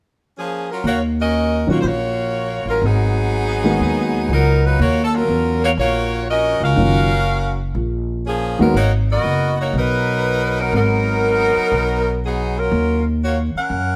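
Brassy and dramatic, this big band swing excerpt moves at 121 BPM in 4/4 with a strong swing feel, set in Eb minor. A bright saxophone section carries the melody from 0.4 seconds, played up front as a loose section with jazz-style vibrato. An upright bass enters at 0.8 seconds, plucked pizzicato on steel strings with a woody, warm tone, also placed up front. A grand piano with a warm, intimate character supplies accompaniment from 1.7 to 8.7 seconds, its natural sound including audible action noise. The harmony settles mostly on Ebm9 and Abm9, and a light reverb gives the ensemble a modest sense of space.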